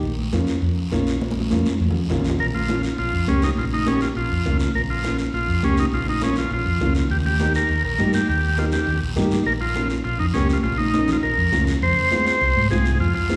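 Cumbia excerpt at a fiery, passionate 204 BPM in Bb dorian, where a round, amped hollow-body electric bass sits up front with raspy close guiro, ringing high-tuned congas in the background and a woody, mellow upright piano, until a fill from 1.2 seconds leads to a buzzy vintage combo organ with light vibrato taking the melody at 2.4 seconds, all set in a reverberant recital hall.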